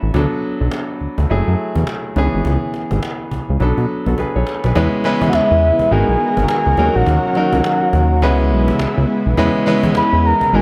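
A swung sixteenth-note groove from a distant, woody cajon drives this slick, confident new jack swing R&B excerpt, where a fat, detuned analog bass with a filter sweep and a bright, polished grand piano sit up front through smooth minor-seventh and ninth chords, then after a cajon fill at 3.6 seconds a lush, warbling vintage pad enters in the background at 4.8 seconds and a round, dark octave-layered synth lead with chorus, tremolo and vibrato takes the melody from 5.3 seconds, all in a light reverb.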